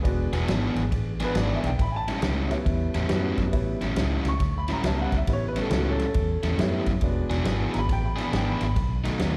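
A swung shuffle in 4/4 rolls along at a laid-back, gritty pace in this short electric blues excerpt, cut from a longer performance. The natural country drum kit starts at 0.0 seconds with a punchy kick, a fat snare and dark ride cymbal, while a vintage fingered electric bass, foam-muted and round, enters at 0.1 seconds to anchor the low end. A crunchy overdriven guitar joins at 0.3 seconds and sits up front with a bright, picked riff. Behind them, a clear upright piano supplies woody, intimate accompaniment with audible action noise and a slapback echo. The harmony moves from E7 to A7, returns to E7 and turns on B7 near the close. The sound carries the feel of a live gig heard through the venue's PA, blending small room ambience with recital hall reverb.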